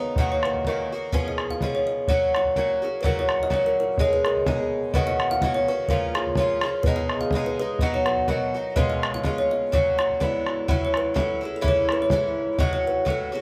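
Bathed in a large studio's wet reverb with the band playing live in one room, this cheerful, bright Celtic polka at 126 BPM in 2/4 with a light swing in F# major sets a woody, ringing kalimba melody over a metallic, double-strung Irish bouzouki and a boomy, vintage-toned bodhran sitting up front, moving through chords such as D#m, C#7 and F# before shifting at 10.7 s to a new section on A6 as this short cut from a longer piece ends.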